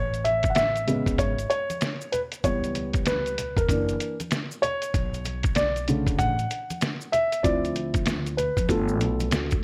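Smooth and cool, this jazz-hop excerpt from a longer hip hop piece with swung sixteenths puts a dark, mellow, boxy baby grand piano up front, soloing with short sustain over seventh and ninth chords, supported by a woody pizzicato upright bass on gut strings, a compressed, muffled, pitched-down sampler-style drum kit with a thumpy kick and medium-tuned snare, and close, dry maracas and congas with hard hands tucked in the background, set within light reverb and small room ambience.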